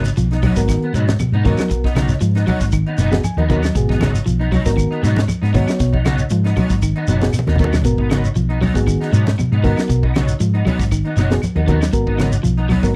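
Funky and driving, this 117 BPM afrobeat excerpt in G# dorian rides a G#m7 groove in 4/4, with a dark, round, punchy hollow-body bass, a tight funk kit with high-tuned snare, reedy electric piano accompaniment that adds a fill at 3.0 seconds, one slightly broken-up picked guitar playing arpeggios and another twangy guitar firing stabs through ensemble chorus and slapback echo, grainy shekere, bright hard-hand congas and woody claves set back in the mix, and a drum fill at 7.2 seconds, all captured in a dry, close 1970s-style studio sound.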